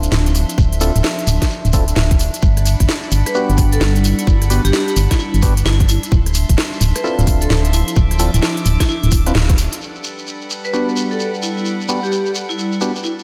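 A bouncy, soulful two-step UK garage excerpt opens with hollow organ stabs laced with chorus, phaser and delay, a dark, up-front FM bass, crisp hats, rim clicks and a cracking snare, a grainy close shekere and a warbling, nostalgic lo-fi pad pumping under sidechain; a tight electronic kick soon joins, a floating bowed violin section arrives at 2.4 s, and a ringing hard-mallet vibraphone melody with delay enters at 3.3 s, before a band accent at 9.3 s and the bass and drums dropping out around 9.8 s, so that the stabs, pad, strings, vibraphone and shekere carry on over swung Dm9 and Gmaj7 harmony.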